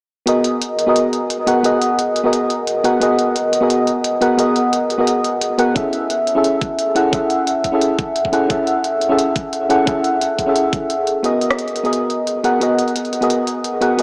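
A dreamy mix soaked in lush hall reverb, with a small-speaker character, frames this short cut from a longer liquid drum and bass piece in G# minor at 175 BPM, its sixteenths carrying a light swing. A mellow FM electric piano sits up front throughout, its round, warbling, vintage tone thickened by chorus and a diffuse ambient delay as the harmony moves from G#m9 to Amaj7 and back. Beneath it, a layered electronic drum kit with crisp hats and a rim click sits lower in the mix and gives the lush, rolling mood its pulse. A knocking electronic kick joins at 5.8 seconds and drops out at 10.8 seconds, just before a brief break gives way to a build-up from 11.2 seconds. Both drum parts carry the trace of having been re-recorded in a small room.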